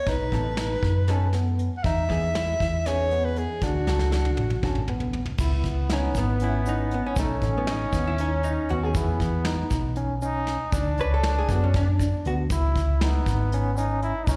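A breathy, close-miked soprano saxophone carries the opening melody with scooped notes and vibrato, giving way at 5.4 seconds to a brilliant trombone second line as the hollow-body jazz guitar takes a solo. This brooding, intricate progressive instrumental moves in 7/8 at 237 BPM in C# minor, heard live through a venue's PA with recital-hall reverb. Beneath it, a round, up-front hollow-body electric bass, a gritty overdriven tine electric piano with fast tremolo and tape echo, a soft brush drum kit with a fill before the change, and a grainy tube shaker in the background fill out the band.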